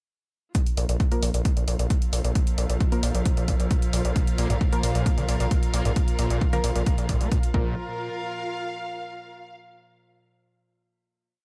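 Driving peak-time techno at 133 BPM in a straight 4/4, intense and industrial, built on an up-front, punchy four-on-the-floor kick, tape-warm programmed hats and a gritty, nasal sawtooth bass on Bb1 that gallops in sixteenth notes through distortion and tube saturation, with sidechain pumping on the hats, bass and other layers. A lush bowed string section fades in from 0.5 seconds with slowly shifting chords, while in the background an eerie, metallic FM drone, muted and detuned dub chord stabs echoing sparsely in one parallel shape, and, from 4.2 seconds, a squelchy, screaming acid line with accents and slides on a 12-step loop drifting against the bar fill out the dry mix. The groove breaks at 7.8 seconds, leaving a final string note to ring until the end.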